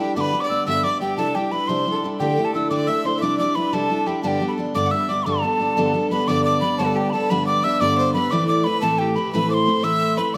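A mellow, hollow mid whistle carries the melody in this cheerful, lively Celtic jig in 6/8. Its metal tone is airy, with a chiff on each crisp attack, a touch of vibrato and a tape echo trailing behind. Beneath it, a single bowed fiddle plays a second line that is clear and biting, with a nasal, earthy edge, sitting lower in the mix than the whistle. A picked steel-string dreadnought guitar, full-bodied and up front, supplies the accompaniment, moving through G, Cadd9, Dsus2 and Cadd9 again before returning to G and Gadd9. At 6.3 seconds the tune moves into a new section, and at 8.3 seconds the harmony shifts from G to Amadd9, while a moderate recital hall reverb gives this short cut from a longer piece a roomy sense of space.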